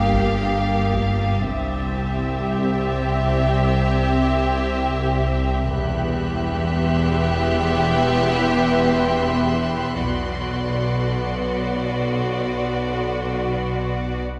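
Cinematic suspense film score at a slow 56 BPM in 4/4, this mysterious, uneasy passage is cut from a longer piece and sits in a wet concert hall reverb. A rich, focused violin section carries the melody between D5 and F5, with a second violin line beneath it that is lush and expressive, its attack soft. Smooth, even violas fill in the harmony, while the cellos and double basses sit in the background, bowed with vibrato, the basses reaching down to E1. A vintage analog drone, evolving and warbling with chorus, sustains underneath throughout, and a dark, woody violin section adds a high texture up to A6. A very quiet taiko ensemble struck with hard sticks sounds from 0.1 to 7.8 seconds, as the harmony moves from Gm7 through C and Em to Bm.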